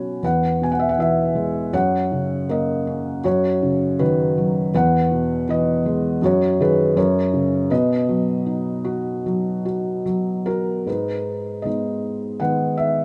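Classical solo piano in a lyrical, peaceful vein, this short excerpt moves at a rubato 79 BPM in 4/4 and sits in B major, tuned to A4 = 441 Hz. A single felt-muted upright piano carries everything from 0.0 to 13.0 seconds, ranging from E2 up to B5. Its thick felt gives a soft, dark, intimate tone, and the audible action noise and up-front placement put the listener close to the instrument, inside a light reverb. The harmony drifts through E, F#, Badd9/F#, Eadd9, B/F# and F# before settling on B at 7.7 seconds. At 10.9 seconds a new section opens on G#m, shortly before the excerpt is cut off.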